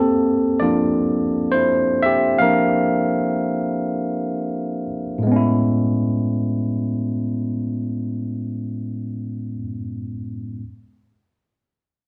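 Sensual and warm, this short R&B excerpt moves at 84 BPM in 4/4 with a gentle 16th-note swing, tuned to A4 = 444 Hz. A barky, clean tine electric piano sits up front through a combo amp, playing alone from the start and spanning A2 to F5 as its harmony moves from C9sus4 to Amaj7 at 5.3 seconds. A moderate stone room reverb surrounds the piano, giving it the feel of a band playing live in one room.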